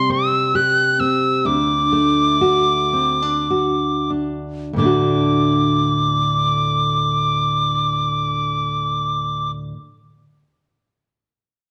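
Heard through worn, warbly old cassette tape with drifting pitch and a moderate recital-hall reverb, this wistful, tender Celtic slow air moves in a rubato 3/4 between 43 and 68 BPM in D mixolydian, easing its pace through the opening 4.8 seconds before a second phrase begins. A close-miked metal tin whistle carries the melody up front, airy and crisp in attack with audible chiff and vibrato. A fingerpicked classical nylon-string guitar accompanies equally up front, warm-toned, with finger squeaks, moving from a C5 chord to D at 1.5 seconds.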